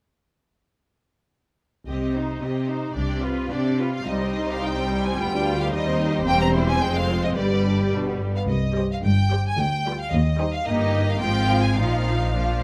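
Close, detailed microphones and a light reverb give this short cut from a longer classical-period movement for string orchestra a present, intimate sound. In C minor at 109 BPM in 2/4, the music feels restless and urgent, though its rubato lets the pulse give and take. All five sections enter together at 1.9 seconds: a lush, smooth first violin section carries the melody, while a second violin section with a soft attack and a distant, expressive quality adds a supporting line beneath it. Violas fill the middle with an intense, lightly vibrant accompaniment. The low end is anchored by a focused double bass section and an even, warm cello section, which sits slightly forward in the balance. After a brief opening statement, a longer passage from 4.1 seconds moves through shifting harmonies toward an unresolved suspended chord before the cut ends at 12.6 seconds.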